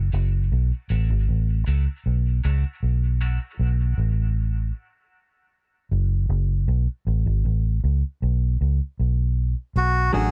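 A vintage muted electric bass, played with the fingers, carries this short cut from a longer dub reggae piece, sounding dark, round and foam-muted as it sits up front for the whole of its 10.3 seconds. The mood is hypnotic and meditative, with a straight feel in four. A mellow electric guitar adds clean, compressed accompaniment with subtle chorus, a high-pass filter and dub echo, playing through the opening 3.5 seconds and returning briefly at the close. The harmony moves from Bm7 to B5 and then to a rootless G#madd11 before settling back on Bm7. At 9.8 seconds a reedy, breathy melodica with a nasal, wooden-cased tone steps forward with the melody, its notes trailed by dub echo. The room is dry, with little reverb around the parts.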